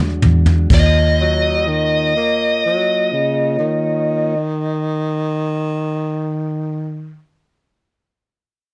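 Light reverb gives this short cut from a longer slow blues in a straight 12/8 a gentle sense of space, with a gritty, swaggering mood. A brushed vintage drum kit opens with a fill of dark cymbals, punchy kick and toms, while a muted, round fingered electric bass sits low and amped beneath a soft, flute-like tonewheel organ holding sustained chords through a slow rotary speaker. At 0.7 seconds a smooth, overdriven lead guitar steps up front with a picked high Eb as the harmony moves from E9 to Ebsus2. A breathy tenor saxophone enters at 1.2 seconds with a subtone second line, its soft attack, scooped notes and light jazz vibrato carrying on alone after the other parts fall away, until 7.2 seconds.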